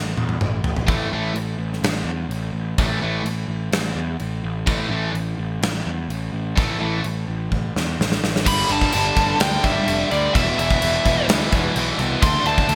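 A fuzzy, overdriven electric bass opens this heavy, aggressive hard rock excerpt up front alongside a drum fill from a punchy, gated 1980s kit with bright cymbals and a polished stone-room sheen. At 0.9 seconds a crunchy overdriven guitar and a distorted high-gain guitar join in the background with a picked riff, and a second, very quiet double-tracked high-gain guitar later thickens it. At 8.5 seconds, after another drum fill, a biting lead guitar takes the melody through overdrive and digital delay, and from 9.2 seconds a soft, breathy pad with chorus and phaser adds faint sustained chords beneath the bright, digital-era production.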